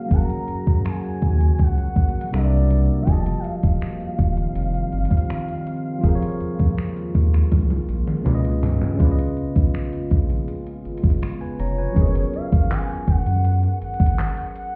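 Contemporary R&B at a smooth, dreamy 81 BPM in F# major, this excerpt is led by a gliding portamento lead with a soft sine-and-triangle tone, vibrato, chorus, phaser and delay, floating over a bell-like, bright tine electric piano and a deep, moody sawtooth pad that sustains chorused chords until 11.9 seconds. Underneath, an up-front saturated sub bass and a thumpy, tape-colored 80s digital drum machine of kick, toms, hi-hat, handclaps and finger snaps in gated reverb carry the groove, with a drum fill from 7.5 seconds. Chords move from F# through C13, F7, A#m7/E# and C#7 to F#maj7 at 12.0 seconds, while the whole mix sounds muffled, as if heard through a wall in a stone room.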